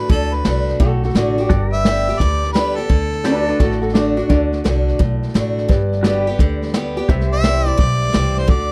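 A swung 4/4 groove at 172 BPM drives this sunny, down-home honky-tonk and classic country excerpt in D mixolydian, set in a dry, close 1970s-style studio sound, with a punchy brush kit and a woody, dark pizzicato upright bass up front, a bright, boxy parlour acoustic guitar picking the accompaniment, a warm harmonica carrying the jazz-style melody with light vibrato and scooped notes until 3.8 seconds and returning at 7.3 seconds, a metallic, nasal lap resonator guitar playing a mellow slide second line, clean, compressed pedal steel chords with volume swells and subtle chorus in the background, and a smooth, vintage upright piano entering at 4.3 seconds and adding a brief fill, all over chords moving from D to G and on to C.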